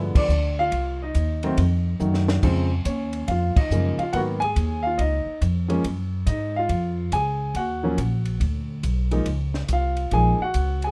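Swung eighths in 4/4 at 140 BPM drive this moody, swinging jazz piano trio in Bb minor, where a polished, present grand piano carries the melody over woody pizzicato upright bass and a dark, smooth cocktail drum kit with a high-tuned snare and punchy kick, all three up front in a dry sound, as the band hits accents at 0.1 and 3.5 seconds and the drums fill from 2.0 seconds while the harmony moves from G7b9 and F7b9 through Bbm7, Abm9 and Gbsus2 to Db6.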